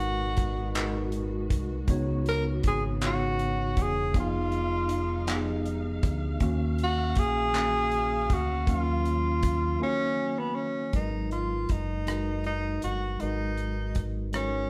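An up-front tenor saxophone carries the yearning, late-night melody in this slow six-eight R&B fragment at 53 BPM, with light vibrato, scooped notes and a punchy, jazz-inflected tone, tuned to A4 = 436 Hz and moving through Abm9, Db7sus4, Fm7b5 and Ebm9. A mellow, clean tine electric piano and a deep, round fingered dub bass support it, while a dry, damped 70s drum kit with handclaps, hi-hat, a tight kick drum and rim click sits forward from 0.4 s, and a background string section adds bowed, expressive sustained chords with portamento until 10.9 s. After a break at 9.8 s the harmony settles on Abm7, and a moderate large studio reverb places the band together in one room.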